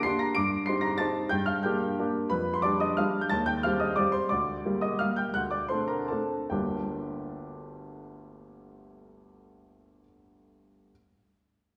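In a rubato 3/4 that ranges from 133 to 203 BPM, this wistful, elegant classical piano waltz in G minor is played by a solo baby grand with a clear, natural, up-front tone and short sustain, spanning G1 to D7. The harmony moves through Cm/G, Gm, G7/F, Cm/Eb and Gm/D to D7, slowing down from 3.8 s before settling on Gm as a new section begins at 6.5 s. A wet recital hall reverb places the listener further back in the room, and the passage is cut from a longer piece.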